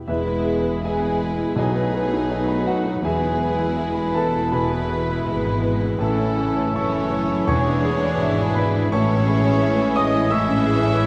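Classical orchestral excerpt in E major at a rubato 82 BPM, brooding and passionate, in which a clear, up-front grand piano carries the melody alongside a rich, vibrato-laden violin section, while a second, more distant violin section, an airy flute, a clarinet and a roomy oboe weave second lines over a lush viola section and bassoon, mellow French horns and soft-attack trombones hold sustained chords, cellos and double basses anchor the bass, and round, soft-mallet timpani strokes mark 1.6 and 7.5 seconds, all set in a dark production with a wet concert-hall reverb.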